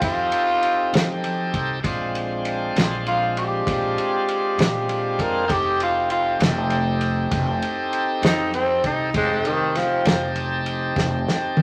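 Slow blues in 12/8 at 66 BPM in F mixolydian, laid-back and soulful, moving from F9 to Bb9 and back to F9 in this short cut from a longer piece. A raspy, breathy tenor saxophone with a growling edge sits up front and solos until 10.4 seconds, over a bright, shouting tonewheel organ that holds sustained chords with light overdrive, key click and a slow rotary speaker. A woody pizzicato upright bass and a soul drum kit with a fat snare, tight kick and dark cymbals support them, the drums adding a fill from 11.0 seconds, all in a wet club reverb with vinyl crackle.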